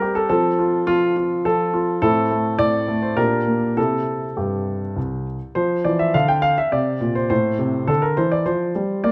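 Heard through close, detailed microphones in a moderate recital-hall reverb, this elegant, playful classical-period sonatina fragment in F major moves at 103 BPM in a rubato 3/4, its solo warm grand piano sitting up front with a short sustain across a range from C2 to G5, and it turns to a new section at 5.6 seconds before breaking off at 9.1 seconds as a cut from a longer piece.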